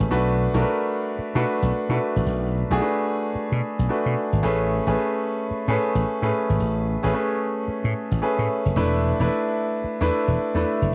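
A warm concert grand piano and a bright, punchy slap bass open together, both up front, in a confident, slick new jack swing groove at 111 BPM in B dorian, with a 16th-note swing feel. The piano carries the chords from Bm7 to Amaj9 and on to E7sus4 with a natural, deep-bottomed tone colored by cassette tape, while the amped electric slap bass anchors the low end. Light reverb and the character of a home cassette recording give this short R&B cut an intimate, lo-fi sheen.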